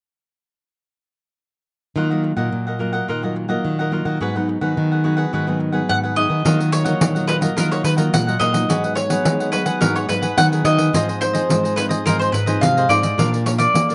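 A straight 4/4 samba-and-choro pulse begins at 2.0 s with a crisp, picked cavaquinho carrying a slapback echo, a bright fingerpicked classical nylon-string guitar in accompaniment, and a second nylon-string guitar with fresh strings playing a warm bass line in the background. At 5.9 s a round, up-front mandolin takes the melody with its double strings, and a jingly pandeiro played with soft hands joins at 6.5 s. The mood is lively yet yearning, heard in an outdoor recording with light reverb and a gentle top end, cut from a longer piece.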